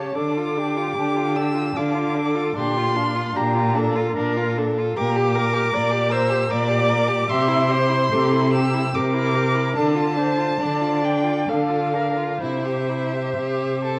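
A slow romantic classical movement for string quartet, this short excerpt cut from a longer piece feels tender and lyrical, moving in a flexible rubato three-beat lilt. A single first violin carries the melody high in its range with a focused, vibrato-rich tone and a smooth top, while the second violin traces an inner line beneath it with the same concentrated bowed sound. The viola fills in the accompaniment with an even, mellow tone, and the cello anchors the bass close and up front, its bowing smooth and steady. The harmony drifts from D minor through Bb, G minor and C before returning to D minor and settling on C at 12.4 seconds. The whole quartet sits in a reverberant recital hall, heard through worn, warbling old cassette tape with vinyl crackle and a wavering pitch drift that lends it a faded, nostalgic cast.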